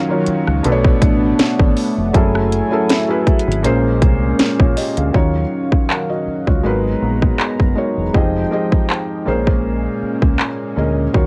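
A trap drum kit with a hard-clipped kick, sharp snare, metallic hats, handclaps and rim click sits up front from 0.3 s in this sensual, moody contemporary R&B excerpt at 80 BPM with a light 16th-note swing, over a round, dark dub bass, a soft felt-muted upright piano with audible action noise, and a shimmering, chorused pulse-width pad, all moving through minor ninth chords such as Ebm9, Gbm9 and Bbm9 with the cassette-tape character of a home recording in a moderate studio ambience.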